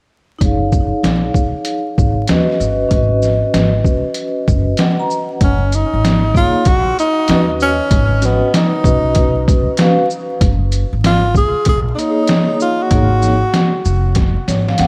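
Vinyl crackle and an echo-heavy mix with light reverb frame this smooth, relaxed jazz-hop cut from a longer piece, where a compressed, pitched-down, sampler-style drum kit with a thumpy kick and overdriven grit sits up front over a woody, growly pizzicato upright bass. A metallic, ringing vibraphone, softened by a low-pass filter and trailed by analog delay, carries the jazzy chords from 0.4 seconds. At 5.4 seconds a breathy, mellow tenor saxophone enters with subtone, scooped notes and its own analog delay, before drums and vibraphone share a fill at 14.2 seconds.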